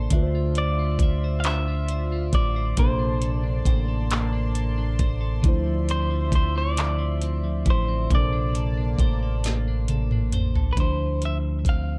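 Slow, sultry six-eight R&B in D minor at 45 BPM, this late-night excerpt rests on a punchy, dark fingered bass and an up-front electronic kit with knocking kick, woody snare, metallic hats, handclaps and toms, while a mellow tine electric piano and a shimmering, retro pulse-width pad hold Dm9 and Bbmaj9 chords under a clean, picked guitar second line. From 0.6 seconds a bright, twangy, scooped lead guitar carries the melody through spring reverb and tape echo. A drum fill from 9.4 seconds leads into a new section at 10.8 seconds, where the pad drops out and the rest of the band plays on in a dry, close sound.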